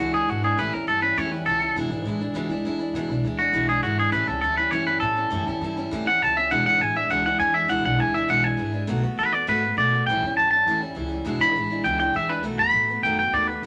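A clean, twangy electric guitar sits up front with the melody from the start, over a full-bodied picked steel-string acoustic guitar and a woody, thumpy pizzicato upright bass on gut strings, giving this upbeat, retro rockabilly section, cut from a longer piece, a straight 4/4 feel as it moves through E7, A7 and B7 changes in the moderate reverb of a large studio.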